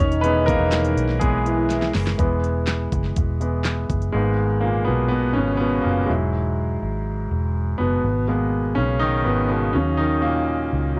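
A home cassette recording with light reverb carries this bittersweet, earnest piano-driven pop excerpt in G# minor at 123 BPM, where a bright, up-front grand piano with audible action noise and long sustain leads throughout over a dark, foam-muted, punchy fingered electric bass. A mellow French horn section with a smooth top adds a classical-style second line until 1.9 seconds. A layered electronic drum kit with a knocking kick, fat snare, crisp hats and handclaps plays a fill before dropping out at 4.1 seconds, leaving piano and bass to move through G#madd9, Eadd9 and D#m.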